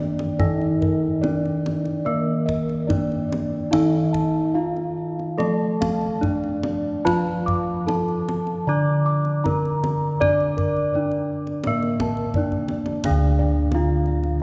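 Hypnotic and stately, this Javanese gamelan passage in a straight 4/4 is a short cut from a longer piece. Bronze metallophones carry the melody and a lower accompaniment, while a second set of metallophones and bossed gongs spin arpeggios high above. One metallophone sounds boxy under a wooden mallet, another rings brightly under a horn mallet, and a third, struck with padded disc mallets, shimmers with the beating of its paired tuning. The bossed gongs are round and bronze: one set is mellow and soft under padded beaters, and the bass gongs sit forward in the middle of the sound. The kendang enters at 0.2 seconds, deep, close and dry under hard hands, with drum fills at the opening and again from 12.5 seconds into a brief new section at 13.1 seconds. A long church reverb surrounds the ensemble.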